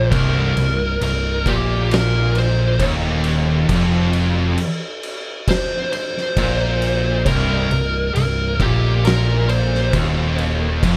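A straight 4/4 pulse from an oversized, low-tuned acoustic drum kit, its fat snare, punchy kick and crash cymbal sounding saturated and gritty in a stone room, carries this brooding, ominous stoner and doom metal fragment. Over it, a compressed, dark fuzz lead guitar plays a solo melody through distortion and delay until 9.9 s. Beneath sit two thick fuzz guitars picking a riff in the background, a bright, double-tracked overdriven electric guitar picking a riff in the same low register, and an amped, overdriven fingered electric bass, all in a dry sound cut from a longer piece.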